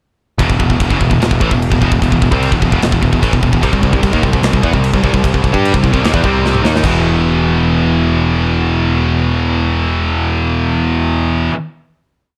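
An up-front, tight metal drum kit drives this short, heavy and aggressive metal piece with a half-time groove, crisp cymbals and a tight kick, ending its part with a fill just before it stops at 6.9 s. A growly electric bass doubles the power-chord riff in driving eighth notes beneath two scooped, high-gain guitars, and a double-tracked fuzz guitar joins in the background at 3.6 s. The band lands on a final chord at 6.8 s that rings out in a dark, dry mix.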